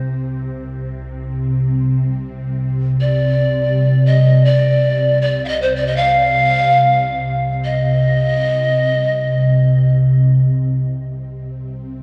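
Unmetered and floating in free time, this spacious, meditative world piece in C minor opens with faint, shimmering crotales over a low, ethereal drone pad, full-bodied and detuned with ensemble chorus, phaser and built-in reverb, before a breathy bamboo pan flute with tape echo and a tongued chiff joins to carry an expressive melody from 3.0 to 9.9 seconds, all set in a dark production with a long cathedral reverb in this excerpt.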